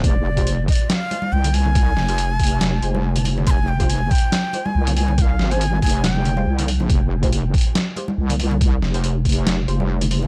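A heavy, saturated wobble bass sits up front in this dark, meditative deep dubstep excerpt at 140 BPM in F dorian, anchored by a thumpy, pitched-down electronic kick and a gritty, tape-warm trip hop sampler kit with hi-hat and snare, while a breathy bamboo shakuhachi with vibrato and dub echo carries the melody until 6.7 seconds over muted, nasal chord stabs with phaser entering at 0.4 seconds and soft-handed congas joining in the background at 1.1 seconds, all held in a dry, cassette-tinged hardware sound.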